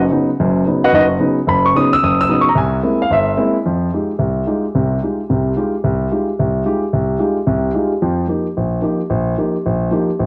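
Searching and cool, this brief excerpt of fast swinging jazz at 220 BPM features a dark, mellow grand piano played solo and up front, ranging from F#1 to E6 as it moves through chords from B and C7b13 into F minor at 3.6 seconds, heard through a moderate spring reverb on a home cassette recording.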